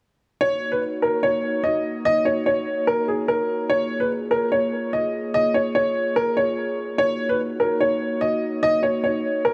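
Light reverb and a small room ambience surround this ominous, tense hip hop fragment in Eb minor, set at 146 BPM in 4/4 with a half-time feel and tuned to A4 = 441 Hz. An up-front, woody, slightly detuned upright piano carries the melody from 0.4 seconds, while a glassy, ethereal glass harmonica with a slow attack and audible beating holds sustained chords from 0.5 seconds in a boxy small-room sound. The harmony moves from Ebm7 to Bbm7 and back to Ebm7 at 7.0 seconds.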